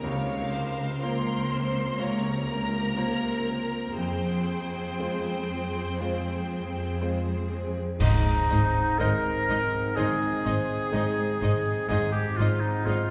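Cinematic, emotional orchestral film score in a hopeful, moving rubato, where a rich violin section carries the melody and a clear violin section plays a second line over a brilliant concert grand piano, smooth background violas, a ringing fingerpicked harp and lush, close cellos, with a cymbal swell, dark clash cymbals and concert bass drum arriving at 4.0 s, and at 8.0 s an ensemble accent brings in a punchy oboe, a distant clarinet, mellow French horns and a portamento double bass section, heard from further back in a wet scoring-stage reverb.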